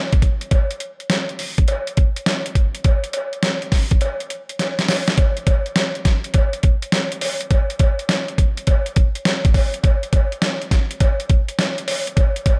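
R&B groove at 103 BPM in 4/4, with a heavy 16th-note swing that gives it a bouncy, confident strut. A boom bap sampler-style drum kit carries the piece from 0.1 seconds, its hi-hat, thumpy kick and medium-tuned snare sounding compressed, pitched down and gritty, sitting up front in the mix. A cowbell joins at 0.5 seconds, metallic and acoustic but set back at a distance, as if heard across a large room, and lower in level than the drums. A drum fill at 4.6 seconds leads from the opening section into a second passage that runs to the end at 12.6 seconds. Light reverb rounds out the sound of this short cut from a longer piece.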